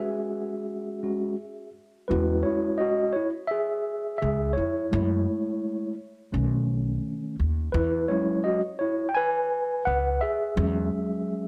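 A mellow, clean tine electric piano sits up front through its built-in speakers, playing alone from the start and pausing for a short break at 1.4 seconds before the woody, pizzicato upright bass joins at 2.1 seconds. This relaxed, warm jazz-hop groove in E major moves at 85 BPM in 4/4 with a swung sixteenth-note feel, drifting through rich E6/9, F#m7 and B9 chords. Light reverb and a dry, gritty hardware sound give this passage, cut from a longer piece, an intimate character.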